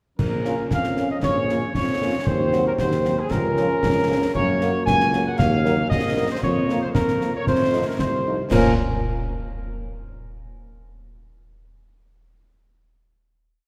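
A short, complete military-style march for wind band in Bb minor opens at 0.2 s, with a tight trumpet section carrying the melody up front over sustained trombone chords, a warm tuba placing the bass on the beats, and a close, dry marching snare over bass drum with dark clash cymbals, all at a steady 115 BPM in 2/4. French horns join at 0.4 s with soft-attacked after-beat chords in the background, their mellow, lightly vibrato classical tone shared by the trumpets and trombones, while the recording carries a wet church reverb. The mood is martial and resolute, the harmony moving from Bb minor through Gb, Eb minor and F7 before settling on a final Bb minor chord from 8.5 s.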